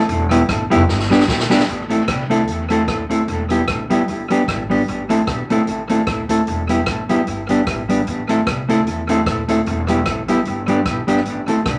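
Driving and mischievous, this swung ska excerpt in A minor at 150 BPM sets a dark, clean, up-front electric guitar with dub echo over a woody, thumpy pizzicato upright bass and a swinging big-band drum kit, its punchy kick, rim click, hi-hat and snare also sent through dub echo, with a drum fill from 0.9 to 1.7 seconds before the Am, Em, G cycle settles in, all inside a wet club reverb.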